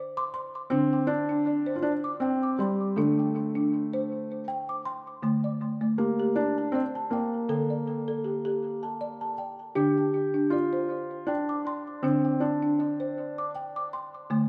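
A felt-muted upright piano carries a soft, intimate melody with audible action noise and a touch of delay, up front beside a folk marimba whose woody, round, rustic soft-mallet arpeggios, also treated with delay, continue to 14.5 s after the piano stops at 13.5 s, in a gentle, meditative world piece at 80 BPM in a lightly swung 3/4 that moves from D5 to Bb/D harmony within a dark, warm production bathed in a wet echo-chamber reverb.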